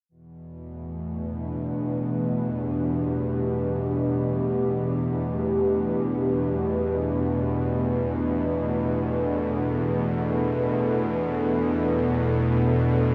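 Drenched in a huge, cavernous reverb, this unsettling dark ambient drone excerpt opens with a tense, string-like bowed drone sitting up front from 0.5 s, its bright, detuned sawtooth tone, noise layer and vibrato hanging low, joined at 0.8 s by a deep, moody analog pad holding slow-attack sustained chords coloured by ring modulation, a sub octave and chorus.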